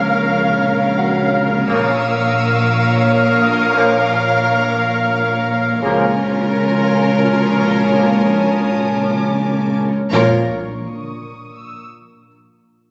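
Soft, sul tasto string sections open this tense, ominous excerpt of a cinematic suspense score in Bb minor at 86 BPM in 3/4, with a pure violin melody over a rich second violin line, an up-front viola accompaniment, and woody cellos and dark double basses beneath, all resting on a detuned, organ-like drone and a very quiet, boxy grand piano texture. A floating high violin layer then enters at about 1.6 seconds, and mellow French horns with clear, tight trombones add sustained chords in the background from about 1.7 seconds. A huge sub drop lands as the harmony settles at 10.1 seconds, everything heard as if captured on a phone in a reverberant club room with a dull, muffled top.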